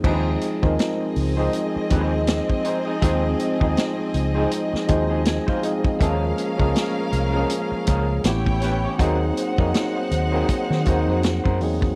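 A worn, slightly out-of-tune tine electric piano sits up front with a fill from 4.5 to 6.0 seconds, over a round, foam-muted fingered bass, a punchy vintage drum kit with dark cymbals, a twangy, slightly broken-up guitar riff in the background and a lush bowed string section with vibrato, all in a silky, cinematic 1970s-style soul groove at 80 BPM with a swung sixteenth feel, heard in a dry, close studio sound.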